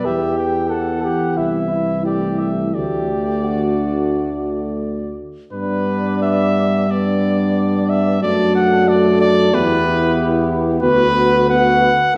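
A stately brass quintet opens at once in G major, moving at a rubato pace of roughly 84-94 BPM in 4/4, in a short passage cut from a longer classical piece. The clear trumpet carries the melody up front with a singing vibrato, while the mellow flugelhorn, set farther back and roomy with a light vibrato, shapes a second line beneath it. A glowing French horn sits in the background as accompaniment alongside the close-miked trombone, whose tone is clear. The bass trombone anchors the low end, prominent in level yet distant and roomy in character. The harmony begins on E minor and passes through A minor and D before a new section arrives at 5.5 seconds on G, closing on Bm/D near 10.8 seconds, all heard from further back in a wet recital hall with a generous 1.5-second decay.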